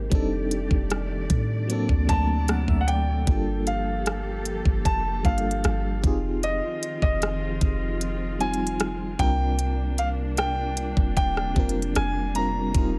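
Tender and romantic, this contemporary R&B piece moves at a slow 76 BPM in a straight 4/4, cut from a longer work and settling into Bb major from 3.3 seconds. A mellow FM electric piano with tremolo and a phaser carries the accompaniment throughout, with a noise layer in its tone, and it plays a fill from 1.7 to 3.3 seconds. Beneath it, an intimate string section holds sustained bowed chords with vibrato and a smooth top, while a clean, boomy 808-style bass sits deep and dark up front. A trap drum kit with a knocking kick, crisp hats and rim clicks drives the groove in a produced, electronic style. At 2.1 seconds a warm concert grand piano enters with the melody in a high register, natural in tone and up front, trailed by tape echo. The harmony drifts through rich extended chords such as Gm9, Fm9 and Bb69, all bathed in a digital ambience.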